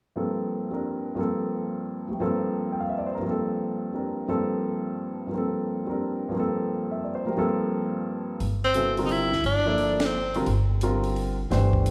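A clear tenor saxophone with light vibrato and a soft attack steps up front at 8.6 seconds for a brief solo line in this intense, spiritual modal jazz excerpt in a swung three-time feel. Before it, an intimate concert grand piano with deep bass and audible action noise plays alone over a Gm11 chord, until a woody pizzicato upright bass and a dark, smooth cocktail drum kit with a high-tuned snare and punchy kick join at 8.4 seconds. The band hits an accent at 10.0 seconds, and a wet recital hall reverb gives the recording the sound of a church or concert hall.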